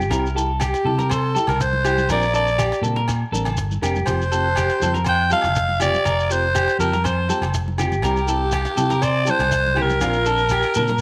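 A straight 4/4 groove at 121 BPM drives this sunny highlife guitar band clip in F major, with a snappy, dry cajon and distant, ringing agogo bells sitting in the background while close, grainy shekere and very quiet, compressed, saturated congas with a bright, thin skin fill out the percussion. An up-front fingered electric bass, dark and round through an amp, anchors the harmony as it moves through C, Bbadd9 and Fsus2. A clean, picked semi-hollow electric guitar plays hollow-body arpeggios in a narrow upper range, while a softer thumb-plucked nylon-string guitar adds classical-style accompaniment with audible finger squeak. At 0.6 seconds a raspy alto saxophone enters as the solo melody, gritty and bright with vibrato in a pop style, riding out front over the band. Moderate spring reverb gives the mix a warm glow through this short cut from a longer piece.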